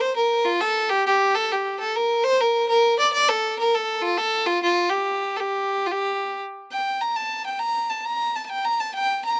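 A single bowed fiddle, nasal and earthy with a light vibrato, plays alone and up front through this spirited, wild Celtic folk fragment in a straight 12/8, moving into a new section at 6.7 seconds, all captured dry in the open air and cut from a longer piece.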